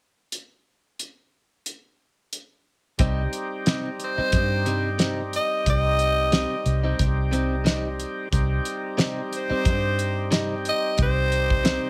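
Straight-eighth soul blues in C minor at 90 BPM, mournful and brooding, cut from a longer piece, opening with a cloth-damped, thuddy drum kit alone on hi-hat, fat snare and tight kick, with a rolled-off top in a small room. At 3.0 seconds the band settles on C minor: a dark, foam-muted fingered electric bass sits up front, an overdriven tonewheel organ adds thick, key-clicking chords through a slow rotary speaker, and a clean, direct-recorded electric guitar plays bright, compressed stabs with subtle chorus. At 4.0 seconds a raspy, growling tenor saxophone takes the jazz-style solo melody up front under light reverb.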